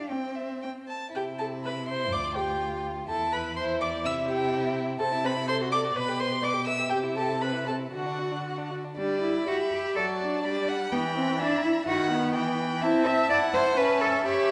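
Violin, viola and cello open together on this quick, spirited and cheerful classical-period string quartet movement at 125 BPM in 2/4 with a rubato feel, joined at 0.1 s by a dark, woody violin melody over an expressive second violin with soft-attack portamento, a focused, smooth-topped viola and an up-front cello bass, all bowed with vibrato, as the music moves from C major to G major at 5.0 s in a reverberant recital hall.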